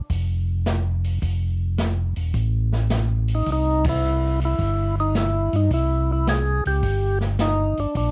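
This soul jazz organ trio excerpt has a bluesy, soulful mood and a swung eighth-note feel, cut from a longer piece. From 0.1 seconds a mellow, round tonewheel organ carries the bass line up front, shimmering with chorus vibrato and a slow rotary speaker. An open acoustic jazz kit plays beneath it at a lower level, with hi-hat, ride, a medium-tuned snare, dusky cymbals and a boomy kick, all sounding natural in a small room and softened by cassette tape. At 3.3 seconds a second tonewheel organ enters with the melody, full and percussive, with second harmonic percussion, audible key click, slow rotary and the same cassette tape coloring. The harmony moves from a chordless opening to F and then C, and the band hits an accent together at 3.8 seconds, all heard in a homespun studio ambience recorded on cassette.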